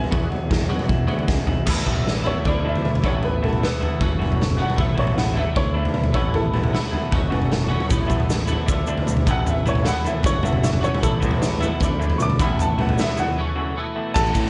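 An upright piano carries the melody through this upbeat, carefree indie rock passage at 154 BPM in A major, its woody, intimate tone marked by audible action noise and trailed by analog delay, taking a solo from 1.7 seconds. Up front, a raw garage drum kit plays with a punchy kick, a medium-tuned snare, crash, ride and toms, its saturated, gritty sound rolled off at the top, and a drum fill leads into the solo. Two guitars share the riff: a twelve-string electric, clean and picked with ensemble chorus, and a lo-fi, slightly broken-up guitar through a small old amp sitting in the background. A growly fingered electric bass holds the low end, while a hollow, flute-like pad warbles very quietly beneath, and an egg shaker adds grainy texture from 7.9 seconds. The chords cycle through Asus2, Dmadd9 and F#m7 before a break settles on Esus4, and a worn, tremolo-laden tine electric piano slips in at 14.2 seconds as this section, cut from a longer piece, ends, all within a small room.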